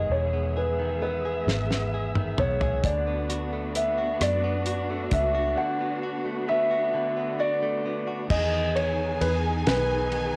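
A dark, mellow grand piano carries the melody of this heartfelt, romantic six-eight pop ballad, its audible action noise lending an intimate, vintage feel over a clean, compressed direct-recorded electric guitar, a lush string section with expressive vibrato and portamento, and a round, foam-muted electric bass. A damped 70s drum kit enters with a fill at 1.5 s, its fat snare and dark cymbals sitting dry and up front, while the harmony moves from Emaj7 to D6 and back. At 8.3 s a bowed violin section adds a second line, and the piano, guitar, strings, drums and violins carry a cassette-tape coloring within a small room's modest reverb in this home recording.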